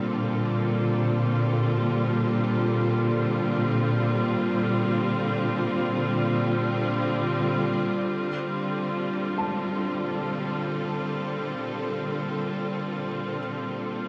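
A lush, bowed string section holds sustained chords up front over a dark symphonic cello bass from the opening moment, with a very quiet sawtooth drone of moving overtones beneath, in this peaceful, free-time ambient excerpt resting on Gm7/Bb and tuned to A4 = 439 Hz, where the cellos fade in from 8.1 seconds and a soft, felt-muted upright piano with audible action noise and tape echo joins at 9.4 seconds in the background, the recording wrapped in huge, wet reverb and cassette tape colour.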